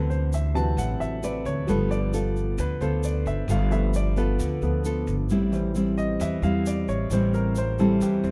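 Nylon-string guitar, grand piano and upright bass sound together from the first moment in this melancholic, intimate bossa nova at 133 BPM in a straight 4/4, with an egg shaker joining at 0.1 seconds. The grand piano takes the solo across the whole 8.3-second fragment, its natural tone carrying audible action noise, over a harmony that moves from D13 to G9 and settles on Am7. Underneath, the thumb-plucked classical guitar adds finger squeak to its accompaniment, while the pizzicato upright bass sits up front with a woody, thumpy gut-string sound. The grainy, bright shaker stays close but low in the balance. The production is dark and dry, keeping the small group warm and near at hand.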